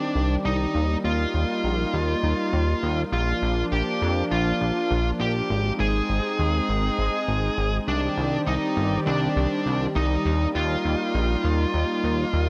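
This short synthwave excerpt opens at once with a distorted fuzz lead guitar carrying the melody over a smooth, detuned analog pad of sustained chords, with a chorused synth bass joining at 0.2 seconds. At 101 BPM in a straight 4/4, the mood is nostalgic yet driving, moving through Cmadd9, Eb, Bb and Ab before circling back. The guitar sits up front with a dark, picked fuzz tone, spread out by shimmer reverb and digital delay. Beneath it, the pad blooms slowly with a mellow sawtooth character softened by chorus and its own shimmer reverb. The bass is just as forward, a glossy, evolving blend of pulse and sawtooth waves with a quick, plucky filtered attack that then sustains. A lush hall reverb and bright, 1980s-style digital production tie the parts together across the 12.5 seconds.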